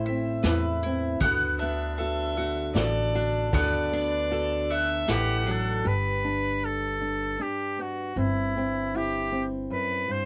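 A dry home recording on cassette captures this gentle, pastoral acoustic folk piece in 3/4, cut from a longer performance. A nasal, reedy fiddle with a gut-string tone sits up front for a bowed solo until 5.8 seconds, over fingerpicked nylon-string guitar, bright double-string mandolin arpeggios, a thumpy, woody pizzicato upright bass and a distant, roomy vintage kit played with brushes and a punchy kick. At 5.1 seconds a warm, classical-style trumpet with light vibrato takes the melody and carries the closing section as the fiddle, mandolin and drums drop away.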